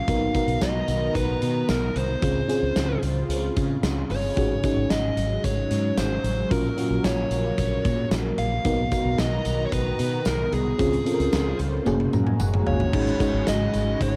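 A nostalgic, glossy 1980s-style pop passage opens with a dark, fuzzy lead guitar melody over a lush, dreamy FM electric piano with chorus and tremolo, while a swirling, detuned sawtooth pad with phaser sits in the background, each carrying a cassette-tape colour. From 0.1 seconds a round, punchy fretless bass and a big, up-front rock drum kit with a tight kick and medium-tuned snare join in, with a jingly tambourine tucked behind them. At 11.9 seconds the drums and electric piano each play a fill leading into a repeat of the opening section at 12.9 seconds, over chords such as Bmaj7, Dbmaj7 and Ab7sus4 in light reverb.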